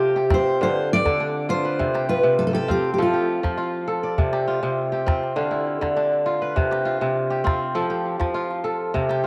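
Joyful and flowing, this short cut of West African string and xylophone music, taped at home on cassette and bathed in a wet spring reverb, pairs a bright, full-bodied fingerpicked steel-string acoustic guitar melody that drops out at 3.9 seconds with ringing, crisp kora arpeggios carrying a tape echo, while a small, close calabash adds percussion beneath a cycle of C5, Dm and F chords.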